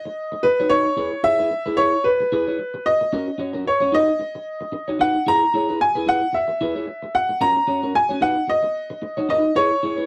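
A clear, boxy baby grand piano carries the melody up front in this sultry, driving disco passage at 112 BPM, its sixteenths swung slightly and tuned to A4 = 441 Hz, cut from a longer piece. From 0.1 s a picked, compressed electric guitar also sits up front as accompaniment, slightly broken-up and touched with subtle chorus, over chords moving from Badd9 through C#m7 and D#m7 to F#add9/C# and D#m. The sound is a dry, close 1970s-style studio recording with light reverb.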